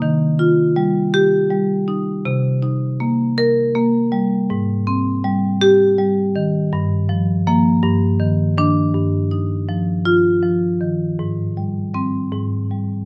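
A solo marimba played with medium hard mallets carries this flowing, playful contemporary classical piece in Eb major, moving at 54 BPM in a straight 6/8 and sounding warm and up front in light reverb as it ranges from G2 to Bb4 through rich harmonies that begin on Ebadd9, pass through Cm7, Abmaj7 and Gm7, and settle on Abmaj7 at 11.2 seconds in this 13.1-second cut from a longer work.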